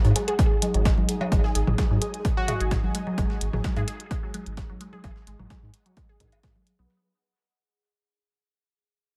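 A saturated sub bass, deep and thick with a fast attack, sits up front in this sparse, quirky minimal techno cut at 129 BPM in a straight 4/4, its sustained notes ranging from G#1 to G#2 and pumping against the sidechain. A punchy, tape-warm electronic kick drives the groove from 0.4 seconds, joined by clicky electronic hi-hats with tape echo and layered electronic congas, cowbell and toms thrown into dub echo. A juicy, squelchy blip pluck plays a resonant, phased riff between D#3 and G#4, trailing dub echoes, while a gritty, overdriven breakbeat kit adds high-passed hi-hat and a medium-tuned snare far beneath. Behind it all, an ethereal, airy pad drifts between D#4 and G#5 through ensemble chorus and phaser, alongside a mellow, very quiet pulsing gated texture held on G#4. At 2.4 seconds a catchy, punchy unison lead darts in briefly on F#4, roughened by vintage 12-bit sampler grit and tape echo, in this echo-heavy mix lifted from a longer piece with a fade-out on the ambient pad.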